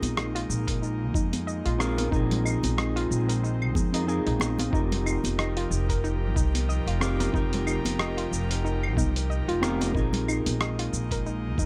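A digital ambience surrounds this short section of a blissful sunset chillout track, set at 92 BPM in 4/4 with a gentle 16th-note swing. Up front, a woody, gut-strung upright bass plays pizzicato, while a gritty, tape-toned sampler-style soul kit of claves, hi-hat, rim click and shaker sits beside a thumpy electronic kick that enters at 0.7 seconds, both re-recorded in a small room. Close, dry congas played with hard hands stay in the background until 10.6 seconds. A dark, clean, fingered electric guitar comps through a digital delay, and an airy, breathy pad with a slow attack and long release holds sustained chords under chorus. A soft, round pluck, entering at 0.2 seconds, decays through chorus and delay in arpeggios as the harmony moves from Bb9sus4 to F9sus4 and back to Bb9sus4 at 10.0 seconds.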